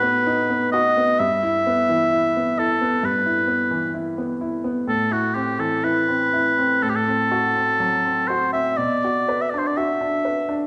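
A warm, close-miked oboe carries a solemn, yearning melody over a clear baby grand piano accompaniment with short sustain in this brief romantic classical excerpt in E minor, moving at a rubato 60-67 BPM in 4/4 through chords from B7/A to Em/G, Am, F#dim/A and Bm within a wet recital hall reverb.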